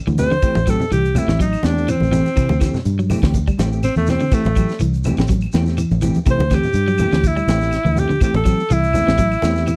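Riding a swung sixteenth-note groove at 123 BPM, this defiant, hypnotic afrobeat excerpt in A dorian rocks between Am7 and D9sus4, with a tight funk drum kit's high-tuned snare and tight kick, a dark, round fingered bass, low-tuned ringing congas, a grainy shekere and faint woody claves beneath an edgy, forceful alto saxophone soloing up front with vibrato and slapback echo, while a slightly broken-up electric guitar picks arpeggios and a clean, mellow second guitar adds chorused stabs, all captured in a dry, close 1970s-style small-room recording.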